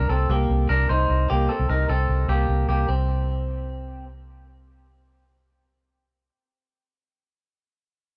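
A dry, close recording in a 1970s studio style, with little reverb, frames this brief fragment cut from a longer piece of jangly indie pop. At 151 BPM in straight 4/4 and C dorian, the mood feels restless and bittersweet. A bright, twangy clean electric guitar picks arpeggios over a Cm7 chord, sitting up front with a touch of tape echo. It carries on until 4.0 seconds. Beneath it, a vintage muted fingered electric bass holds C2 with a dark, round, punchy, foam-muted tone, also placed up front. The harmony drops away at 2.9 seconds, and the bass sounds on until 6.3 seconds.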